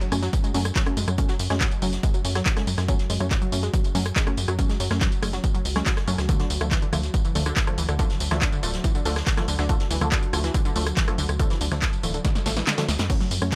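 A digital ambience wraps this punchy, up-front excerpt of driving peak-time techno, cut from a longer piece and running at 141 BPM in a straight 4/4 with a hypnotic, relentless mood. A layered electronic kick leads the mix, re-recorded in a small room, while a tight sawtooth-and-square sequencer bass pumps beneath it in a low register. An analog drum machine adds crash, handclaps, hi-hat, rim click, snare and tambourine with a short room on the snare, clap and hats, and a very quiet brushed acoustic kit with a rolled-off top adds its own hi-hat and snare. A warbly, dusty, detuned pluck riff with chorus, overdrive and dub echo sits alongside muted, mellow chord stabs carrying phaser, 12-bit sampler grit and delay, both pumping with the kick over a deep, moody ambient pad drone. The harmony moves from F#m to Dm at 6.3 seconds, and a drum fill arrives at 12.2 seconds as the kick drops out from 12.7 seconds.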